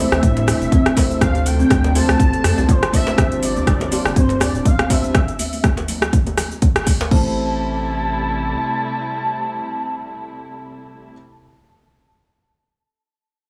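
A punchy, up-front electronic kick drives this earthy, spiritual afro house excerpt at 122 BPM in A minor, alongside a house kit with metallic hats, a deep djembe, faint high-tuned congas and an airy, woody kalimba, all of which drop out around 7.2 seconds. Above them a smooth, dark sawtooth lead sings with vibrato, portamento, chorus and tape echo, while veiled con sordino strings and a mellow felt-muted upright piano pump in the background, and a round analog bass holds the low end until 8.6 seconds. The sound is dry and gritty with transformer saturation and small-room ambience, moving through Am7, Dm7 and G7sus4 into a brief break in the harmony, with a band accent at 6.7 seconds before Am7 returns.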